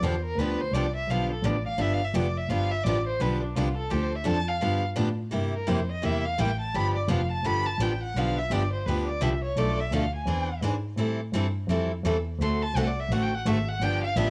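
An expressive bowed violin solo with vibrato and portamento leads this playful, swinging jazz manouche piece at 170 BPM in G mixolydian, carried by bright, boxy picked parlour guitar and a woody bowed double bass with light vibrato and tube saturation over a G7-rooted progression, with the violin and guitar bearing a cassette tape character in a small-room home recording cut from a longer piece.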